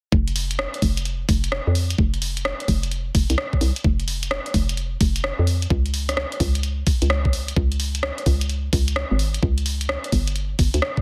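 Soulful and sunny, this short cut from a longer two-step UK garage track swings its sixteenths over an electronic kick that is layered, overdriven and knocking. A punchy analog drum machine sits up front with hi-hat and rim click, its sound carrying the air of a large room. Alongside them, a hollow, bouncy FM bass with a fast attack and a decaying tone plays low and forward, all within a dry, dense, heavily limited modern master.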